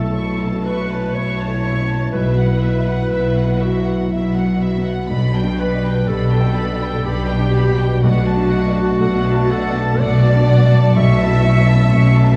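Moving and sorrowful, this cinematic film score excerpt unfolds at a rubato 61 BPM in 3/4, its violin section carrying a rich, vibrato-laden melody that sounds slightly distant, over a very quiet, lush second violin line, an airy flute section and a mellow solo clarinet. A dark grand piano and a smooth, even viola section accompany from the background, while a loose, warm French horn section holds sustained chords and a close cello section underpins a focused double bass section sitting up front on a low B pedal. Chords drift from A/B through Esus2/B, G/B and D/B over that pedal, all bathed in wet concert-hall reverb with vinyl crackle and studio ambience across the 12.4 seconds.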